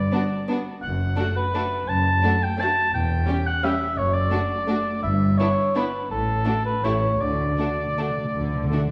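Heard in a reverberant recital hall with the 1.5-second decay of a church or concert hall, this short cut from a classical orchestral ballroom waltz in D major feels elegant and sweeping. It moves in 3/4 at a flexible, rubato pace between 151 and 186 BPM. Up front, a mellow cor anglais with light vibrato carries a second line, while bowed cello and double bass sections hold the bass with soft attacks, the cellos adding expressive portamento. A violin section sings the melody in the background, a focused, rich second violin section adds another line, and distant, smooth, even violas fill in the accompaniment. The harmony drifts through rootless G and D/F# colours to a C#dim/E before settling on D/F# and Em/G, and at 7.2 seconds a close, dry timpani fill on D3 rounds off the passage.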